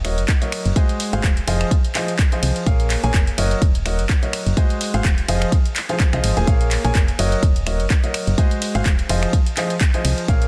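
A punchy, layered electronic kick sits up front from 0.3 seconds, anchoring this bittersweet, soulful piano house excerpt with its swung sixteenths. An intimate baby grand, its action noise audible and its short notes natural, repeats a riff over a looping Gb6, Ab7, Fm7, Bbm7 progression, while a round, dark FM bass with a fast attack pumps beneath it, both breathing with sidechain compression. A tape-warm analog drum machine, re-recorded in a small room, adds finger snaps, handclaps, hi-hat and ride cymbal, all set in digital ambience within a dense, heavily limited modern master.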